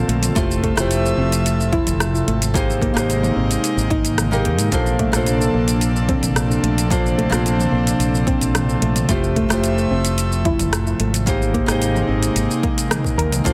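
A dense, heavily limited modern mix sits in a lush hall reverb with a digital sheen, giving this relaxed, sunny sunset chillout excerpt a polished, glowing finish. At 110 BPM in a straight 4/4, a full-bodied, fingerpicked nylon-string guitar carries the accompaniment through a digital delay, while an airy, breathy pad with chorus holds long, bright sustained chords underneath. A mellow fretless electric bass, dark and round, anchors the low end, and a soft, gentle pluck with chorus and delay traces arpeggios quietly in the background. The drums bring a produced, overdriven edge: a deep house kit with metallic hi-hats, rim clicks, shaker and toms enters at 0.1 seconds, joined by a punchy, layered electronic kick at 0.4 seconds. The harmony drifts through lush major-ninth chords, moving from Fmaj9 to Abmaj9 and settling on Bbmaj9 before circling back.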